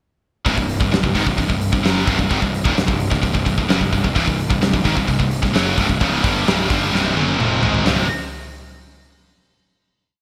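At 0.5 s the full band crashes in together on a power-chord riff over a C minor chord, launching an aggressive, epic heavy metal piece in straight 4/4 at 130 BPM. A scooped, high-gain guitar sits up front with a bright, distorted bite. A second high-gain guitar adds its own distortion in the background, and a double-tracked, tight distorted guitar plays very quietly underneath. A growly, fuzz-laden picked electric bass, overdriven and in the background, drives steady eighth notes that double the guitar riff. The big rock drum kit is up front and treated with gated reverb, its punchy kick, fat snare, hi-hat and toms delivering a big rock groove, and a drum fill at 6.9 s leads into a final C5 chord at 7.9 s. A lush hall reverb and bright 1980s-style digital production give the whole piece a grand, polished sheen.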